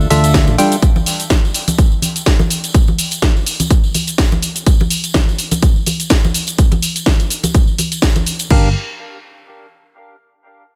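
A tape-warm, small-room drum sound sits up front in this soulful, energetic piano house excerpt, where a hollow, gritty organ stab with chorus and dub echo and an amped, pumping fingered electric bass sound briefly, the bass stopping at 0.6 seconds and the stab at 0.8, handing over to bright, dry tambourine and congas, a layered house kit with cracking snare, hi-hat, shaker and crash, and a punchy electronic kick to carry the swung groove until the stab and bass return at 8.5 seconds on a Gm7 chord.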